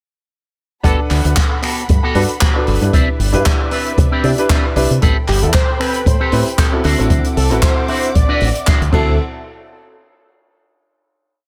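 A sunny, groovy nu-disco piece at 115 BPM in D mixolydian with a light 16th-note swing, where a boomy four-on-the-floor kick and a dark-cymbaled jazz kit with a disco backbeat of handclaps, finger snaps, hi-hat and crash sit under a round, punchy envelope-filtered fingered bass playing a funky syncopated line, a bright, twangy envelope-filtered guitar plays a clean funk chord riff through chorus and delay, a worn baby grand adds sidechain-pumped, delayed rootless chord stabs, and a veiled, muted string section holds lush pumping chords in the background over Gmaj9, Cmaj9, Am9 and D9, until a thick, detuned sawtooth unison lead enters at 5.3 s with delayed call phrases, the whole drop sitting in studio reverb and ending on a final hit at 9.2 s.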